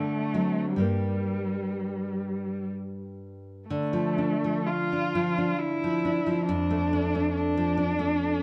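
A melancholic, solemn romantic duo in a rubato 3/4 at 59-70 BPM, this excerpt sets a rich bowed cello melody, sung with vibrato and portamento, over bright fingerpicked nylon-string classical guitar accompaniment, both up front in a moderate recital-hall reverb with a dark, warm production, moving from G minor to D minor at 3.7 s.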